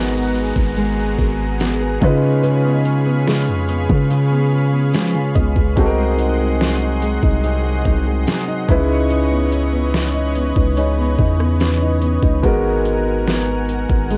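Contemporary R&B with a late-night, longing mood, this excerpt pairs an intimate grand piano, complete with audible action noise, and a fingerpicked nylon-string guitar with finger squeak over a lush, detuned unison pad, a deep, mellow 808-style bass and an up-front drum kit of knocking kick, deep snare and metallic hats, while a crystalline wavetable pluck with analog delay sits in the background, a very quiet downlifter runs until 5.8 seconds, and cassette-tape grit colours the home recording.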